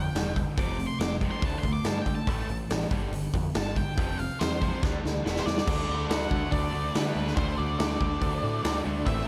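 A big arena sound with a lush hall reverb frames this brooding, gritty classic rock fragment at 141 BPM in a straight 4/4, driven by a huge, up-front acoustic drum kit with a punchy kick and a growling, overdriven picked bass. A dark octave-fuzz lead guitar solos over the opening with slapback and tape echo, while a biting overdriven guitar in the background and a very quiet, compressed overdriven guitar hold riffs over shifting chords from G5 through D5 and A5. A drum fill from 4.8 seconds carries the music through Dsus2 and Em, and then a double-tracked fuzz guitar riff and a faint, woody upright piano join at 5.7 seconds as the harmony lands on D.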